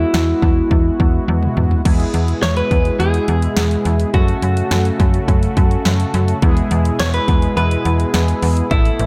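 A clean, direct-recorded electric guitar opens this driving, nocturnal synth-pop fragment, its compressed, picked melody bathed in lush chorus and dub echo, alongside bold, nasal analog synth brass that adds fat sawtooth chords with a filter sweep, vibrato, chorus and its own dub echo. Underneath, a slap-like FM bass sits up front with a snappy, metallic attack that then decays. An electronic house drum kit follows almost at once, its punchy kick and snare placed forward with hi-hat, crash cymbal and toms, and a drum fill from 1.3 to 1.9 seconds marks the move into a new section. At 1.9 seconds a phased analog pad enters in the background, a swirling, detuned sawtooth layer with slow attack and long release that thickens the harmony as it moves between E and F#m. The mix is echo-heavy, with light reverb and a digital ambience giving the groove a spacious, after-dark sheen.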